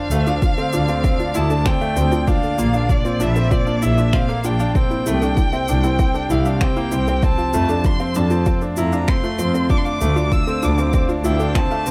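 Hopeful and tender, this piano and strings electronica excerpt moves at 97 BPM in a straight 4/4 over a Dm, Bb, C, F progression. A rich, smooth single violin carries the melody with vibrato. A bright grand piano plays a brilliant, short-sustained riff, while a punchy electronic kick sits up front beside an intense bowed double bass section with sidechain pumping, and layered electronic shaker and finger snaps add texture. In the background, a soft, floating sul tasto string quartet holds pumping chords, and a lo-fi, warbling, detuned pluck spins arpeggios through chorus and digital delay, inside light small-room ambience.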